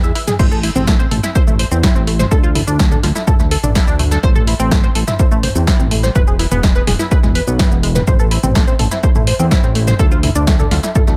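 Melancholic yet driving, this short excerpt from a longer melodic techno piece moves in a straight pulse over a minor-key progression that passes through Dsus2 and E before settling on a bare D5. A punchy, layered electronic kick enters at 0.4 seconds and sits at the front of the mix. Beneath it, a fat, detuned sawtooth bass with a saturated edge sustains low notes and pumps through sidechain compression. A tight sequenced synth spins evolving arpeggios, its detuned sawtooth tone shaped by a filter pluck and thickened with chorus, sidechain pumping and analog delay. The deep house kit adds crash, hi-hat, shaker, toms and a punchy snare, all overdriven, re-recorded in a small room and trailed by tape echo, while the whole mix sits in an echo-heavy digital ambience.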